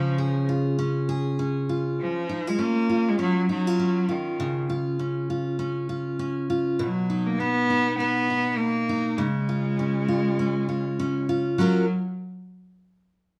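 A rich, bowed solo cello carries the melody up front, its vibrato intense and its top smooth, over a full-bodied picked dreadnought steel-string acoustic guitar in this carefree, sunny pop piece, cut from a longer work. At 100 BPM in 4/4 with a light 16th-note swing, the duo plays live together in one room in F# major, tuned to A4 = 436 Hz, with a wet studio reverb around them. The chords move between C#, F#5 and B before settling on F#maj7 at 11.6 s, and both instruments play through to about 11.9 s.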